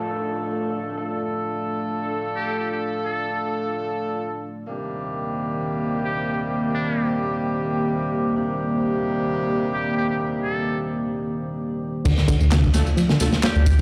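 A buzzy, telephone-filtered muted trumpet carries the melody from 2.4 s over gritty 12-bit horn stabs with tape echo and a dark, chorused analog pad that pumps under sidechain in this funky 130 BPM breakbeat excerpt in D phrygian, moving from Dm to Cm7 after a very quiet downlifter, until a reedy, fast-tremolo electric piano riff arrives and the drop at 12.1 s brings in a rumbling detuned saw bass and a crunchy breakbeat kit layered with a bright-hatted garage kit of claps and tambourine, all set in a large, reverberant room.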